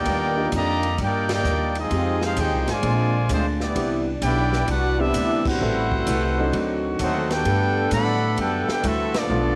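Joyful and energetic, this short big band swing excerpt in G major at 130 BPM puts an up-front trumpet section with light vibrato on the melody and a woody, thumpy pizzicato upright bass with transformer saturation at the front, while a clear trombone section carries a quiet second line, a smooth-topped saxophone section holds very quiet sustained chords, a natural grand piano and a boxy picked steel-string acoustic guitar add accompaniment, and an airy, polished drum kit with punchy kick swings underneath through chords moving from Ebmaj7 to Gmaj9, with band accents at 1.2, 5.4 and 9.1 seconds, all in a small room on a cassette home recording.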